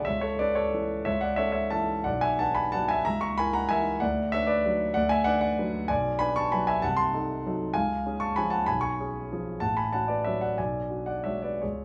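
This classical piano waltz in 3/4 is elegant and bittersweet, moving with a rubato feel at roughly 154-207 BPM. A solo grand piano with a warm tone sits up front and spans from the deep bass to the upper treble, its harmony passing through diminished and half-diminished chords before ending on G#m7b5/B. A wet, large-studio reverb surrounds it with a sense of distance, and the excerpt is cut from a longer piece.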